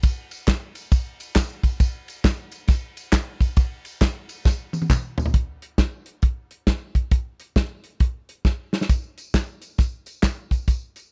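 A natural country drum kit and a layer of tambourine, egg shaker and group handclaps open this jubilant, hopeful gospel passage together, cut from a longer piece. The groove moves at 135 BPM in 4/4 with a swung eighth-note feel. The acoustic kit sits up front, with a punchy kick, a medium-tuned snare, hi-hat, ride cymbal and toms, and its sound is airy and polished. The percussion layer has a small-room character and sits much lower in the mix. It drops out at 5.3 seconds, leaving the drums alone, and returns at 8.9 seconds, while drum fills close out the first two passages. The whole recording has a dry, close 1970s-style studio sound.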